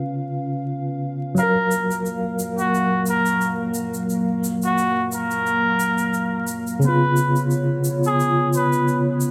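A worn, slightly out-of-tune tine electric piano with overdrive, tremolo and tape echo opens this brooding, hypnotic trip hop passage at 88 BPM alongside a dark, detuned analog pad carrying chorus and a filter sweep, before a veiled cup-muted trumpet with vibrato and tape echo carries the melody from 1.4 seconds over a gently swung egg shaker, moving from Db7 to Gbmaj7 and back under vinyl crackle and light small-room reverb.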